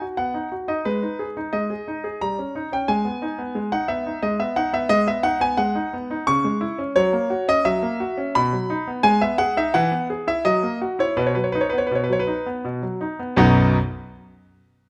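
Close, detailed microphones and light reverb put a solo concert grand piano up front, its smooth tone carrying a deep bass and a vintage character. This is a graceful, playful fragment of a classical-period sonatina in B major, moving in 3/4 at a straight 82-90 BPM and tuned to A4 = 442 Hz. The piano spans from B1 up to C#6 as the harmony moves from B through G#m and D#7/G, then to C#m and F#7 before settling back on B near 8.4 seconds. A second pass through G#m, E and F#7 resolves to B at 11.2 seconds, rounding off the opening section with classical poise. A new section begins at 13.4 seconds, and the piano sounds until 13.8 seconds, where this cut from a longer piece breaks off.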